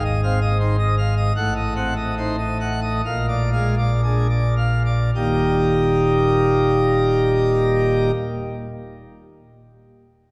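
Classical organ toccata in E-flat major, brilliant and jubilant, taken from a longer piece and moving at 51-84 BPM in 4/4, slowing down through its first 5.1 seconds. A solo pipe organ on full plenum with mixtures sounds up front in a romantic voicing, spanning from deep bass tones to a bright treble as the harmony passes through Ab6, Adim7 and Bb7 before landing on E-flat at 5.1 seconds. The organ sounds until 8.1 seconds inside a wet church reverb with a long, resonant decay.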